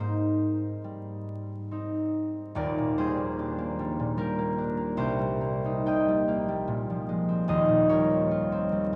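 A solo concert harp opens this dreamy, peaceful classical excerpt, its fingerpicked, ringing acoustic tone placed up front and spanning Eb1 to Ab5. The playing moves in a rubato 3/4 at roughly 66-76 BPM in Eb major, drifting from Abmaj7 to Ebmaj7 at 2.6 seconds and arriving on Eb69 at 7.5 seconds. A long, wet cathedral reverb places the harp in a church or concert-hall space, and vinyl crackle runs through the recording.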